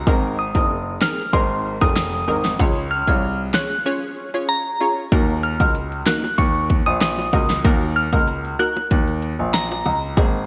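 A glassy, crystalline FM synth bell carries the melody high above a punchy, fat-snared pop drum kit, a present grand piano playing the bass line, and crisp detuned wavetable chord stabs with analog chorus in this sultry, tough 95 BPM dancehall cut in Eb dorian, moving from Abadd9 to Db and then Ebm at 5.1 seconds. Very quiet, low-tuned bongos join at 6.1 seconds amid a bright 1980s-style digital sheen and light reverb.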